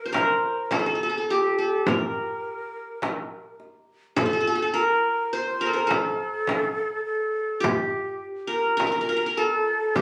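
Soulful and hypnotic, this fragment of a Turkish makam ensemble moves at 104 BPM in a straight 10/8: an up-front, bright-edged qanun carries the melody through plate reverb, a breathy, close-miked ney with vibrato plays a second line, and a crisp metal-shell darbuka and a deep, hard-handed frame drum keep time from 0.1 seconds, the whole ensemble caught on a phone in a small, moderately reverberant room with club reverb and compression.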